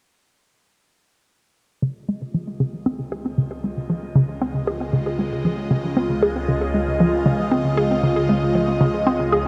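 Cosmic and expansive, this excerpt of ambient, sequencer-driven space music moves at 116 BPM in a straight 4/4 in Db major, opening at 1.8 seconds on a Dbadd9 chord. A swirling, detuned sawtooth pad, bright and up front with phaser and chorus, sustains chords from Db2 to Eb5 and fades in until 9.5 seconds. Alongside it, a hollow, bouncy square-wave pluck plays a riff between Db3 and Ab4 through chorus, phaser and tape echo, its filter sweeping across the passage while a wet shimmer reverb with a 7.9-second tail surrounds the sound.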